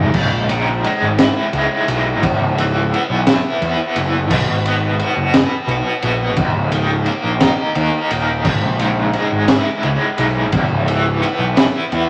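A tremolo-laden overdriven electric guitar and a fuzz-drenched picked bass open together, with a crunchy breakbeat drum kit joining at 0.1 s, in this dark, mysterious psychedelic rock excerpt cut from a longer piece. The groove sits at a slow 58 BPM in 6/8, counted in dotted quarters with a straight feel, in C# dorian. The bright, scooped, double-tracked guitar plays a picked riff spanning a broad range from C#2 to B4, while the round, warm bass sits low beneath it, and all three parts stay up front. The drums, with a punchy kick, high-tuned snare and dusky crash and ride cymbals, sound saturated and rolled-off on top, giving the beat a smooth, muffled grit. The harmony moves from C#m through E5, B5 and D#5 before returning to C#m and E5, all set in a moderate studio room with a veil of vinyl crackle.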